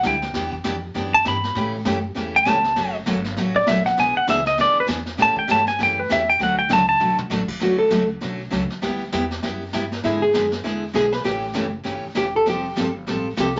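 A short, wet studio reverb and a muted top end give this western swing excerpt a cozy, old-time sound, set in D major at a brisk 198 BPM with a swung 4/4 feel and a down-home, swinging mood. A clean, twangy lap steel guitar sits up front and takes the opening solo, its compressed slide lines ringing bright until about 7.2 seconds. Beneath it, a picked dreadnought acoustic guitar with fresh strings and audible finger squeak carries the accompaniment, while a pizzicato upright bass with gut strings adds a woody, thumpy foundation. A vintage brush drum kit, heard from a distance in a small room with dark cymbals and a tight kick, plays throughout and rolls into a brief fill just before the midpoint. At 7.6 seconds a clean hollow-body jazz guitar steps forward for the second solo, its tone dark, over changes that move from Dmaj7 and G6 through E7 and A7 before landing on Fadd9.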